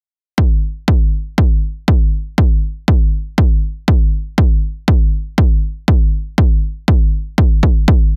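The sound is dry and dense, with a heavily limited modern master that puts everything close to the ear. This short cut from a longer house track moves at 120 BPM in a straight 4/4 feel. An electronic kick drum carries the whole passage, entering at 0.4 seconds and running until 8.0 seconds. Layered and punchy, it is pushed up front and roughened with overdrive, giving each hit a gritty, saturated weight. Despite resting on this single driving part, the mood comes across as emotional and bittersweet.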